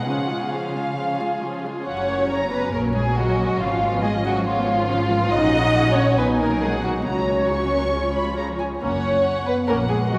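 A quick classical-period movement for string orchestra in F# major at 138 BPM in 4/4, played with a rubato feel, this lively, cheerful passage is cut from a longer piece. Muted violins carry the melody from the start, joined at once by a second violin line that sits up front and louder than the tune itself, while muted violas supply accompaniment and muted cellos hold the bass. The double basses enter at 1.9 s, deepening the low end with a lush, warm tone as the harmony moves through F#, B and C#7 chords. Every string section plays con sordino, giving the ensemble a veiled, dark colour with soft attacks and vibrato, the violins sounding close and lush. The whole is bathed in a wet church reverb of 2.8 s, and a vinyl crackle lends the recording an aged patina.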